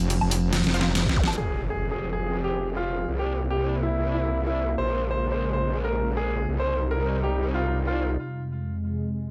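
A growling, formant-filtered bass sits up front through most of this heavy, chaotic half-time dubstep excerpt, arriving at 1.1 seconds after a metallic FM wobble bass, an overdriven drum kit with crash, bright hats, deep snare and woodblock, and a bold orchestra-hit-like stab in the background open the drop. A knocking electronic kick and electronic zap and impact effects mark the change, as an intimate baby grand piano with audible action noise carries a delayed melody over a lush, detuned, sidechain-pumped unison pad. From 8.2 seconds the pad takes a filter sweep, all within a light reverb.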